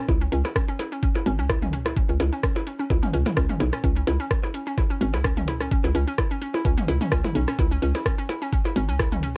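Minimal techno at 128 BPM in 4/4 with a light swing on the sixteenths, set in C# minor and tuned slightly below standard pitch, this short cut from a longer piece feels hypnotic and clinical. A hollow, bouncy square-wave pluck carries the riff between C#4 and E4, detuned with a noise layer and a snappy filter envelope, treated with chorus, analog delay, cassette tape colour and sidechain pumping. Underneath, a punchy FM bass with a knocking, decaying tone bounces between G#1 and C#2, sitting up front and pumping with sidechain compression. The layered electronic kick drum knocks at the front of the mix, joined by a garage kit of metallic hi-hats, rim clicks and shaker, plus tape-warm electronic blips and toms echoing through analog delay. All parts run together from the start to about 9 seconds, with the drums and percussion carrying a small-room character and the whole recording wrapped in light reverb and the grain of a home cassette recording.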